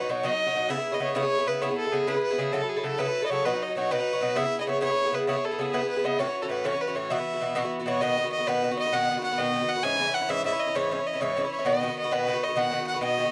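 Rollicking and cheerful, this short cut from a longer Celtic folk piece moves at 132 beats per minute in 12/8 with a straight feel. A single bowed fiddle carries the melody, its airy, reedy gut-string tone sitting close and up front. An acoustic Irish bouzouki plays the accompaniment throughout, its picked double strings giving a warm, metallic ring, also up front beside the fiddle. The harmony opens in E major, cycling through E6, A6 and B chords with a brief Esus2, before shifting to B major at 8.0 seconds, where the chords move between B and C#m. The sound is that of a dry, close 1970s-style studio recording touched with light reverb, and both instruments play from the very start to the end at 13.3 seconds.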